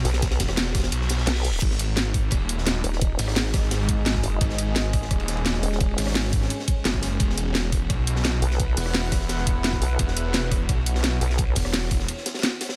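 A snarling, distorted saw bass leads this dark, technical drum and bass excerpt at 172 BPM, its detuned, growling tone pushed up front with tube saturation and a resonant moving notch. Beside it a nasal vowel-sweep wobble bass with chorus plays from 0.1 to 6.0 seconds and returns later, both basses sitting low in the same register. A knocking electronic kick and a layered drum and bass kit with a cracking snare, bright hats, rim clicks and crashes drive the straight 4/4 groove, while a crunchy, gritty breakbeat kit with a high-tuned snare and dark cymbals sits in the background. The kick drops out briefly at 0.9 seconds, and a reverse cymbal sweeps in at 1.1 seconds. From 2.5 seconds a deep, moody ambient pad with a slow attack, ring modulation and sidechain pumping fills in sustained chords over E and G#. The mood is mechanical and futuristic, the mix dry, ending on a short break at 12.1 seconds.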